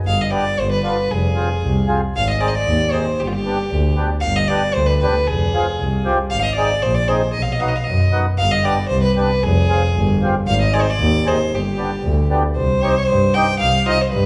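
Festive yet soulful, this short klezmer excerpt moves at 115 BPM in a straight 2/4, set in G phrygian dominant and tuned slightly high to A4 = 443 Hz. A bowed double bass opens at 0.0 seconds, its warm gut-string tone carrying light vibrato, an airy bow and a nasal, reedy edge in a period style, sitting up front between F1 and G2. A rich violin takes the melody from 0.1 seconds, played sul tasto by a single bowed player with a soft attack and a pure, floating quality that sounds somehow distant even though it sits up front, ranging from F4 to G5. From 0.3 seconds a mellow accordion fills in the accompaniment between B3 and Ab4, full and reedy with the colour of its tone chamber, placed mid-forward. The trio plays live together in one large studio with a wet reverb around 1.5 seconds, cycling through G, Fm and Ab with a turn to B before shifting to a new section on Cm at 12.6 seconds, where the excerpt breaks off.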